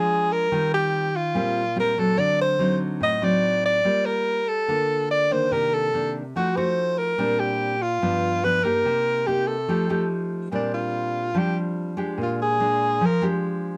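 A straight 4/4 bossa nova groove at 144 BPM sets a breezy, relaxed mood in B-flat major, in this short passage cut from a longer piece. A clear alto saxophone carries the melody up front, its soft attack, subtone and vibrato giving the line a jazz-style intimacy between D4 and Eb5. Beneath it, a fingerpicked nylon-string guitar supplies full-bodied, deep classical accompaniment from G2 to A4, sitting slightly lower in the mix than the horn. The harmony moves through rich extended chords such as Eb69, D7b9, Gm9 and F7b9 before settling on Bb69 and Bb6. At 10.5 seconds the music shifts into a new section where the saxophone takes a solo, stopping at 13.2 seconds while the guitar rings on to 13.8. Light reverb gives the pair a gentle sense of space.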